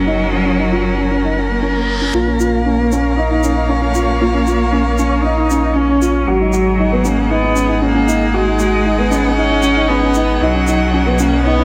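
Recital-hall reverb gives this short cut from a longer piano and strings electronica track a moderate, airy space around a small-room ambience, setting a hopeful, tender mood at 116 BPM in a straight 4/4. A bright, focused cello carries the melody from a distant position, its bowed vibrato shaped by a low-pass filter and delay, with a filter sweep on it from 2.1 s onward. Beneath it, a string quartet with one player per line holds sustained chords, expressive and close, with soft attacks and portamento. A dark, woody upright piano with a boxy tone repeats a riff through delay, opening under a filter sweep, while a deep, rumbling detuned saw bass sits up front, its beating sawtooth edge giving the low end weight. A reverse cymbal and riser mark the turn into the build-up at 2.1 s, and a smooth, rolled-off shaker played with brushes joins at 2.4 s, as the harmony moves from F# through A#m and G#m7 to a suspended Bsus2.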